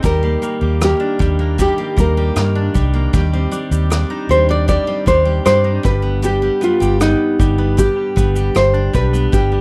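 From the first moment, an up-front, fingerpicked nylon-string guitar with audible finger squeak carries a wistful, reflective melody in this 78 BPM acoustic pop excerpt in C minor, set over a bright, full-bodied picked steel-string acoustic guitar, clean, twangy twelve-string electric guitar arpeggios, a round, punchy, foam-muted vintage electric bass, and a dark, smooth brush kit with tight kick, rim click and shaker, all moving from Ebmaj7 to Cmadd9/Eb and then G under light reverb.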